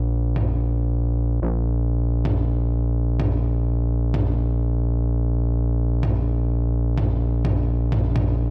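Hypnotic and cinematic, this short melodic techno passage, cut from a longer piece, moves at 127 BPM in a straight 4/4. A gritty, aggressive synth bass carries it from the first moment to the end at 8.5 seconds. Its sawtooth tone with oscillator sync and a sine layer has a resonant filter pluck, a fast attack and sustained notes reaching down to Bb1, all run through tube saturation. Electronic toms arrive at 0.4 seconds with an analog, overdriven character, sounding as if re-recorded in a large room while still sitting up front. Low-pass filtering softens the toms and their room sound. The mix carries little reverb, keeping both parts close and forceful.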